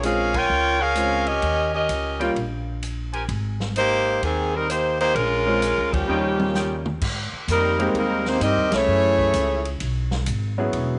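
A bright saxophone section carries the melody from the start over a clear baby grand piano, woody pizzicato upright bass and a vintage drum kit with dark cymbals and a punchy kick, in this swinging, brassy big band jazz excerpt in Ab major at 129 BPM, with warm, soft-attack trumpet stabs entering at 0.3 seconds, a brilliant trombone section adding a tight second line in the background from 5.9 seconds, and a drum fill arriving at 6.1 seconds, heard in a small room with light reverb.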